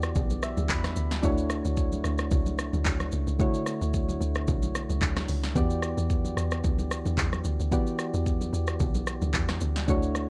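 Soft, round electric-piano-like synth keys with a chorused, vintage warble open this soulful amapiano excerpt alongside a dark, percussive log drum bass and an up-front, punchy deep house kit of kick, snare, handclaps, rim click, hi-hat and shaker with a swung sixteenth-note feel. Very quiet ringing congas enter at 0.2 seconds as the keys add a brief fill over Em7 before the harmony moves to Dmaj9 and back, all wrapped in a worn, warbling cassette-tape ambience.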